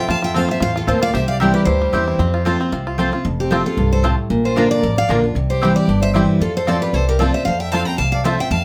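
A bright, full-bodied picked steel-string acoustic guitar sits up front carrying the melody high, while a second picked acoustic guitar of the same bright dreadnought character supplies the accompaniment beneath it. This is a joyful, driving bluegrass passage with a swung feel, cut from a longer piece and built on a simple cycle of F, C and Bb chords. A twangy banjo played with fingerpicks also carries the melody in a lower register, its percussive attack given a slapback echo. A clear fiddle with light vibrato and an airy, biting bow adds an earthy second line, and a mellow, woody mandolin punctuates with stabs from 0.3 seconds. An upright bass, thumpy and pizzicato, anchors the bottom from 0.1 seconds, and a light reverb holds the ensemble together.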